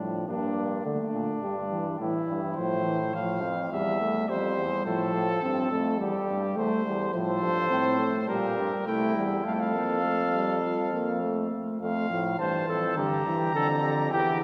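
Joyful and elegant, this excerpt of a classical imitative canzona for brass ensemble moves at 104 BPM in a straight 4/4, settling into F major from 7.1 seconds as a warm cornet with light vibrato carries the melody up front from 2.6 seconds, a dark, smooth-topped trumpet sings the second line, a mellow trombone with vibrato and soft attack supplies accompaniment, and a clear, distant euphonium anchors the bass, all bathed in a wet church reverb.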